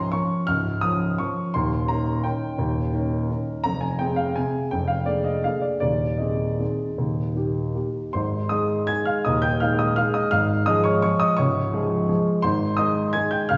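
Sparkling and playful, this short classical piano waltz excerpt in Ab major moves in a rubato 3/4 at roughly 148-180 BPM, its woody upright piano sitting up front with long sustain across a range from deep bass to high treble, heard from further back in a wet recital-hall reverb, with the opening section giving way at 8.1 seconds to a second section that settles on Ab before the cut at 13.6 seconds.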